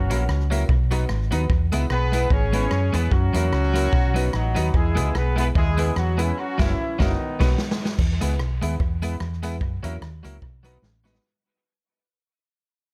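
A mellow, tightly octave-doubled horn section carries the melody over a round, dark hollow-body bass, bright twelve-string guitar and worn, slightly detuned upright piano stabs both trailed by dub echo, a punchy swinging drum kit, and a jingly background tambourine in this bouncy, upbeat ska excerpt at 148 BPM in E major, where a drum fill and band accent at 6.4 seconds lead into a fade-out from 8.0 seconds after the horns stop at 7.8 seconds.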